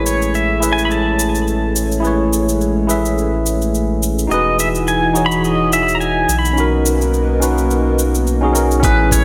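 Electronic shaker and metallic hi-hats set a swung 16th-note groove at 106 BPM in 4/4 for this blissful, smooth sunset chillout excerpt in A lydian, where an up-front, compressed pedal steel guitar carries the melody with fingerpicked slide, volume swells and digital delay over a clean tine electric piano through a combo amp with delay, a thick, warbling detuned unison pad with chorus and a filter sweep, and a round, deep analog bass, set in a lush hall reverb with a bright 1980s-style digital sheen, before a knocking electronic kick drum arrives in the background at 8.8 seconds.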